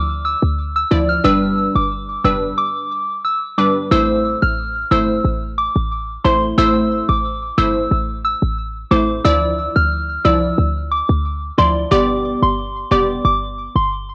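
A dry home cassette recording carries this sultry, bouncy dancehall cut in A minor at 90 BPM, where a punchy, tight 808-style bass sits up front from the start, a glassy, crystalline wavetable pluck enters at 0.9 s, and a soft, pure FM synth bell sings the high melody through chorus, cassette tape and tape echo, with a break at 2.6 s before the harmony lands on Am at 3.9 s.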